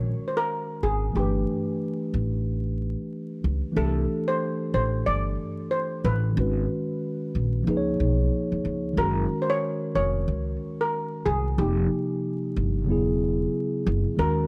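Nocturnal and cool, this hip hop excerpt sits at 92 BPM with a swung 16th-note feel, as a shimmering, metallic steel pan, played with hard rubber sticks in a boxy small room, carries the melody over a mellow, clean tine electric piano. A woody, thumpy pizzicato upright bass with dark gut strings anchors the low end, and all three parts sit up front together through the full 14.5 seconds. The dry, close 1970s-style studio sound with vinyl crackle frames a chord run that moves from Ebm7 through Abm9 and Db13 to a closing Eadd9.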